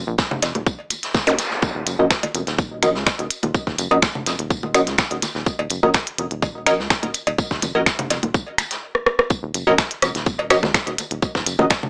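A crisp, detuned wavetable chord stab sits up front in this clinical, quirky minimal techno excerpt, entering at 1.3 seconds with a filter pluck and decaying tail, colored by cassette tape and digital delay while a filter sweep moves across it until 9.3 seconds. Beneath it, a rubbery, hollow square bass bounces with sidechain pumping, dark and resonant, while a tight, tape-toned electronic kick anchors the straight pulse. A minimal click drum kit of finger snaps, clicky hats and rim clicks is overdriven and prominent, joined by overdriven electronic congas, cowbell, bongos and rim click carrying digital delay. A vintage brush drum kit adds mid-forward acoustic hi-hat, snare and tambourine with a rolled-off top, high-passed and pumping in a small room. A brief electronic zap flashes at 1.3 seconds, a drum fill leads into a drop at 9.3 seconds, and the whole track rests on a single Ebm7 chord, with a moderate studio reverb and a small-speaker character.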